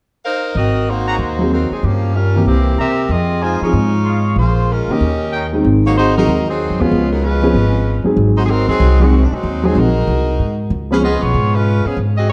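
Big band swing at 189 BPM in Ab mixolydian, joyful and energetic, in which a tight, present saxophone section carries the melody from the start over a woody, pizzicato upright bass that sits up front. A trumpet section with soft attack and light vibrato adds stabs between 1.1 and 5.5 seconds, while a concert grand piano with audible action noise, deep bass and long sustain supplies the accompaniment. The production is dark and warm, set in a moderate recital hall reverb, with the harmony arriving on Ab7 at 5.6 seconds.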